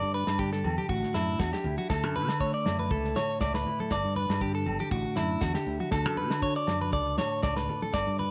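Sunny and joyful, this short highlife guitar band passage moves at 119 BPM in 4/4 with a light swing on the sixteenths, set in D major. A bright, twangy electric guitar sits up front on picked arpeggios, slightly broken-up and scooped, with a slapback echo, while a dark, clean, fingered electric guitar fills in the accompaniment beneath it. A punchy, direct fingered electric bass anchors the low end, and a damped 70s drum kit, dry with a tight kick and a rolled-off top, comes in at 0.3 seconds alongside ringing agogo bells that sound distant, as if in a large room. Thick-skinned congas, compressed and saturated, join at 0.6 seconds in the background. The harmony cycles through G, Asus4 and Dadd9 before returning to G and Asus4 and settling on D, all under a light reverb in what is clearly a fragment cut from a longer piece.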